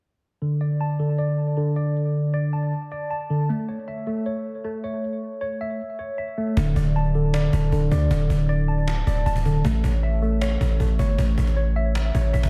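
A worn, slightly out-of-tune tine electric piano opens the excerpt at 0.4 s with up-front arpeggios, colored by phaser and tape echo, setting a melancholic, menacing half-time trap mood. At 6.6 s a punchy, heavy 808-style bass with a sine body, a noise layer, a fast attack and a decaying tail arrives up front, joined by a snappy, distant cajon with snares that sits back in a large room. Light reverb and studio ambience surround the hip hop groove until the cut.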